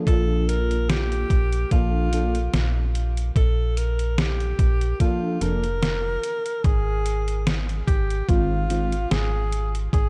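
A mellow, round FM electric piano with ensemble chorus and tape echo opens this faded, nostalgic vaporwave excerpt at 73 BPM with a light sixteenth-note swing, joined at 0.1 s by a breathy, subtoned alto saxophone melody with jazz vibrato and tape echo, a snappy, metallic slap-like FM bass up front, a thumpy sampler-style electronic kick, and a detuned 8-bit drum machine playing hi-hat and a medium-tuned snare, the two drum parts re-recorded in a large room, over Bbmaj7 shifting to Ab6 at 6.2 s in a dry cassette-tape sound, until the piano drops out at 8.9 s.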